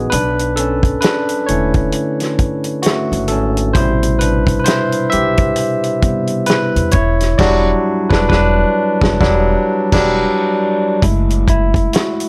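R&B and neo-soul with a sultry, soulful mood at a slow 66 BPM in 4/4, with a light swing on the sixteenths. It is cut from a longer piece, set in a small room. A bright, barky tine electric piano sits up front through a combo amp and carries a solo across the whole passage, over chords moving from Bm9 through Am9 and Em9 to F#m9 at 11.0 seconds. Beneath it, a woody, thumpy pizzicato upright bass with gut strings and a dry, mid-forward soul kit with a fat snare, tight kick, hi-hat and crash lay down the groove, and the band hits accents from 7.4 to 11.0 seconds.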